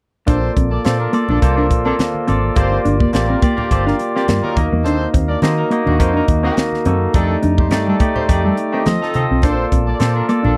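Glossy and breezy, this polished 1980s jazz-funk pop excerpt moves at 105 BPM in Bb major with a light sixteenth-note swing. A barky, lightly overdriven tine electric piano sits up front with subtle chorus, alongside a dark, clean, fingered electric guitar riff and a round, foam-muted vintage bass. A crisp fusion kit adds a high-tuned snare and punchy kick, very quiet low-tuned congas sit beneath, and a clear, loose horn section with vibrato carries a second line, all in a dry, close studio sound over chords moving from Bbmaj7 through Gm7, Ebm and F13.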